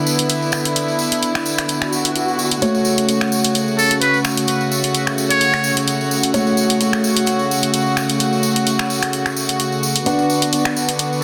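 Set at 129 BPM in 4/4 with a light swing on the sixteenths, this bass house cut in F# minor feels aggressive and gritty, moving from Bm to F#m at 2.6 seconds and back to Bm near the close. A layered, produced house drum kit carries finger snaps and hi-hat, with soft clipping roughening the snare, while a jingly, distant tambourine rings out as if from a large room. A rich studio string section holds floating, softly bowed chords up front, and a dark concert grand piano adds mellow stabs with audible action noise and deep bass, passed through digital delay and a filter sweep across the whole passage. An electronic swell appears between 1.8 and 2.6 seconds, and a trumpet with a metal mute steps forward from 3.8 seconds with a brilliant, buzzy, thin solo line in jazz style, full of vibrato and scooped notes and touched with its own digital delay. A moderate lush hall reverb surrounds the parts, and the dense, heavily limited master keeps this short cut from a longer piece pressing hard throughout.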